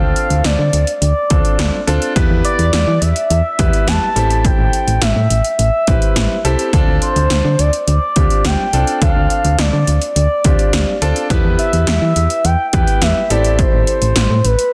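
Nocturnal and cool, this synth-pop excerpt at 105 BPM in D dorian sets a smooth, warbling sawtooth lead with portamento, vibrato, chorus and digital delay over a clear grand piano, a round, dark FM bass sitting up front, and punchy 80s electronic drums with a gated snare and metallic hats that enter at 0.2 seconds, all cycling through Dm7, Em and Am7 in a dense, heavily limited modern mix with light reverb.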